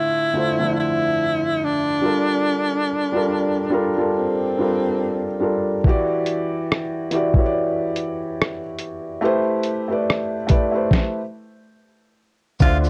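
A 71 BPM groove in 4/4 with a 16th-note swing sets this nostalgic, hazy lo-fi hip hop fragment, cut from a longer piece. A soft, felt-muted upright piano carries the accompaniment throughout, mellow and intimate with a cassette-tape colour, moving through Dm9, Gm9, Em9 and Am9. Over it a breathy tenor saxophone plays the opening melody in a close-miked jazz style, with subtone, vibrato, a soft attack and scooped notes, then returns for a brief moment near the end. The sampler-style drum kit enters at 5.8 seconds, compressed, pitched down and muffled, with a thumpy kick, a medium-tuned snare, rim click, hi-hat and shaker sitting up front. A stop lands at 10.9 seconds, and at 12.6 seconds a deep, round, punchy dub bass appears on a low D. The whole recording sits in a small, moderately reverberant room and carries worn, warbling old-tape pitch drift.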